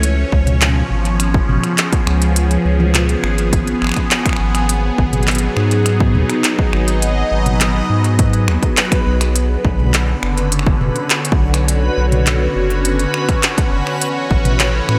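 A swirling, detuned sawtooth pad with phaser, chorus and a gritty 12-bit sampler edge opens this melancholic, intricate IDM excerpt alongside a deep, round analog bass and a tape-warm industrial kit of finger snaps, handclaps, crisp hi-hats and toms, joined at 0.3 seconds by a heavy electronic kick, both drum parts re-recorded in a large room and placed up front. At 5.8 seconds a faint, reversed, granular texture drifts in, dreamy and bright, carrying its own reverb in the background. The chords move from C#7 through G#m7 and Bmadd9 to A6 under a light overall reverb.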